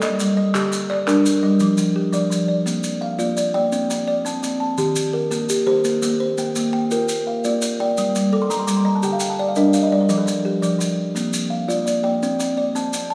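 A buzzing kalimba with a hollow-box, woody rattle and a second dark, smooth kalimba spin mbira-style interlocking arpeggios in this hypnotic, rippling southern African traditional excerpt, in 12/8 at 113 BPM, over grainy maracas throughout and a crisp group handclap heard only until 1.2 seconds, all set in a recital-hall reverb as the chords move from Gm through Eb and Bb, with a kalimba fill from 8.1 to 10.1 seconds.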